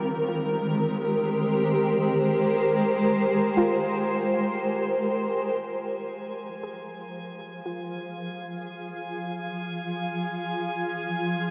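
Bathed in a huge, wet ambient reverb, this melancholic, spacious ambient excerpt drifts at 59 BPM in 3/4 in F minor, moving from an Abmaj9 chord to Fm at 5.6 seconds. A cloudy, blurred granular pad holds up-front sustained chords while a soft, round pluck sits dark in the background with chorus and delay, spinning arpeggios until it stops at 9.2 seconds. A glassy, bright texture of drifting overtones enters at 5.6 seconds, and from then on the pad, pluck and texture each fade in.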